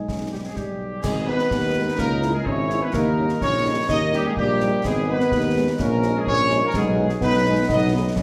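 A stern, martial military-style march for wind band in straight 2/4, this short cut features a warm, up-front trumpet section carrying the melody over a close-miked, dark euphonium second line, a very quiet, soft-attacked French horn section, a solo tuba bass, and dry concert snare, bass drum and clash cymbals with dark cymbals, while a mellow trombone section with light vibrato enters at 1.5 seconds with sustained chords in the background, all set in a reverberant recital hall.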